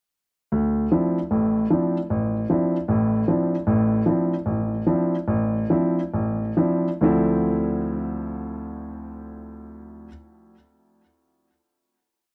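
A solo grand piano opens at 0.5 seconds on a Dm9 chord, playing swung jazz in an intense, searching mood, with a stride bass and close voicings. The sound is intimate and natural, placed up front in a dry, close 1970s-style studio, with audible action noise and tape echo. From 3.7 seconds the tempo slows, and at 7.0 seconds the short piece settles onto a final chord that rings until the piano stops at 10.1 seconds.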